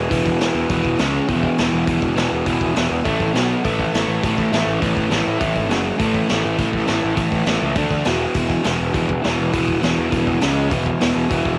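A crunchy, overdriven electric guitar leads this rowdy, upbeat punk rock excerpt, its double-tracked picked riff sitting up front on a tape-saturated cassette sound as it moves through power chords on E, C#, A, B, F# and D at a straight, driving 204 BPM in 4/4. Underneath, a bright, growly fuzz bass adds overdriven grit, while a raw garage drum kit of hi-hat, punchy kick and medium-tuned snare sounds saturated and mid-forward with a rolled-off top. The excerpt has the dry feel of a home recording on cassette, with little room reverb.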